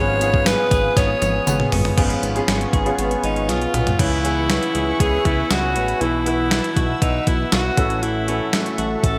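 1980s-style pop in C# minor at 119 BPM, moody and urgent, this short cut from a longer piece puts a raspy, gritty alto saxophone melody up front with digital delay, over a clear baby grand piano with lush chorus, a fat, detuned analog sawtooth bass and a twangy, direct-recorded clean electric guitar riff tucked in the background. A thick unison pad holds sustained chords high behind them, while a thumpy, overdriven 12-bit drum machine with gated reverb enters at 0.2 seconds, adding fills at 1.0 and 3.5 seconds and joined only briefly by a faint, jingly tambourine until 1.6 seconds. The bright digital production sits in a moderate plate reverb as the chords move from C#7/G# through C#m7 and Bsus4 to A6.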